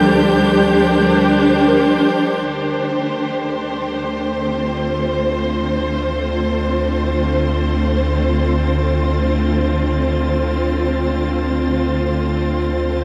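A dark, lush symphonic string section opens this serene, reflective ambient passage, bowed with expressive vibrato and a smooth top as it holds sustained chords up front, starting on a Bbadd9/D voicing. Behind it, a soft FM synth bell traces gentle, mellow arpeggios in the background, its pure, fast-attack notes decaying into long tails through chorus, phaser, analog delay and shimmer reverb, until it drops away at 2.8 seconds. High above, a clear, focused studio violin section bowed with vibrato adds a thin background texture and gradually fades in from 2.5 seconds onward. At that same point a round, deep analog bass enters on a single low note, its evolving blend of sawtooth and sine with ring modulation sustaining beneath the strings. The piece moves in free time, tuned to A4 = 445 Hz, and this fragment of a longer work sits in an enormous ambient space with an 8.0-second reverb tail that leaves the whole mix dreamy and soaked.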